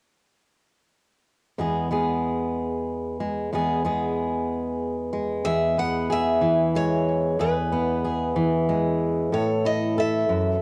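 A full-bodied steel-string guitar, fingerpicked and sitting up front in the mix, opens this pastoral folk excerpt at 1.6 seconds, its jumbo body and audible finger squeaks carrying the accompaniment in a straight 6/8. At 5.4 seconds an old ladder-braced acoustic guitar joins with a picked melody in a higher register, its woody, boxy tone and old strings colored by cassette tape and tape echo. The harmony rests on an E chord before shifting to an A5 at 9.3 seconds. The two guitars share a modest small room, and the home cassette recording lends the whole duo a nostalgic feel.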